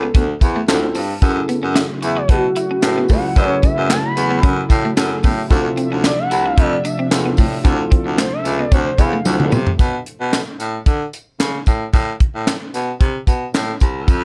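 Early-eighties boogie funk at 112 BPM, this danceable, slick excerpt rides on a tight, up-front funk kit with a high-tuned snare, handclaps and gated reverb, a raspy, gritty baritone saxophone carrying the bass line, and a jingly tambourine in the background, all playing through to 14.2 seconds. A smooth, gliding portamento lead solos with chorus, phaser and tape echo, joined by a twangy, slightly broken-up electric guitar riff, a worn, lightly overdriven tine electric piano that opens with a brief fill, and a detuned sawtooth pad from 1.2 seconds, over chords moving from Dm9 to F#m9 and back. Those upper parts fall away by 9.8 seconds as a drum fill plays, leaving drums, tambourine and saxophone on Bm9 and Amadd9 in a small room.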